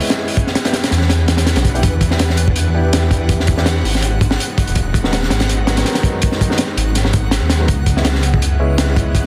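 This excerpt of raw, atmospheric drum and bass at 164 BPM opens with a crunchy, saturated breakbeat kit, its punchy kick and high-tuned snare sitting up front with a rolled-off top, alongside boxy grand piano stabs carrying dub echo and audible action noise. A reversed, dreamy swelling texture enters at 0.5 seconds in the background with built-in reverb, and a thick, menacing detuned saw bass joins at 0.9 seconds, its beating tone prominent in the mix. The chords move from Em7 to G#m7 to C#m7 under a dense, heavily limited modern master.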